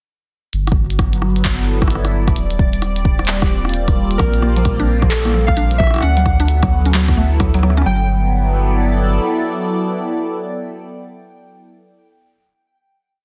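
A dense, heavily limited modern master with light reverb frames this glitchy and playful IDM piece at 131 BPM in 4/4, swung on the 16ths, as a swirling, detuned analog pad with phaser and chorus drifts through Gmaj7, Ebmaj7, Bb and Dmaj7 over a round, mellow sine sub bass sitting up front. A deep, tape-toned electronic kick plays a broken pattern beneath a glitched kit of clicky closed hats, rim clicks and handclaps, with soft clipping on the snare and digital delay, all shifting constantly until the beat drops out at 7.9 seconds. From 4.2 seconds a woody, nasal FM mallet pluck loops a seven-step arpeggio that drifts against the bar, while nostalgic, warbling lo-fi square-and-saw keys with 12-bit sampler grit and a filter sweep wander through a free melody into the closing Gmaj7 chord.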